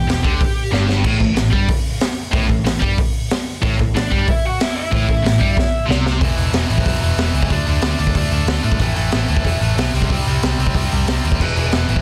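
A dry, dense and heavily limited mix frames this raw, urgent punk rock fragment in E minor at 185 BPM, led by a raw garage drum kit that sits up front with a gritty, pumping small-room sound, a high-tuned snare and a boomy kick, plus fills around 0.7 and 5.6 seconds. A growly, punchy overdriven picked bass and a bright overdriven electric guitar riff drive the whole 12 seconds, while a sludgy overdriven guitar and a tight, double-tracked distorted guitar thicken the riff in the background until 6.2 seconds. A biting lead guitar adds brief overdriven melodic bursts at the start and again from 4.0 seconds, as the chords move from Em through Gsus2 and A5 into a run of power chords.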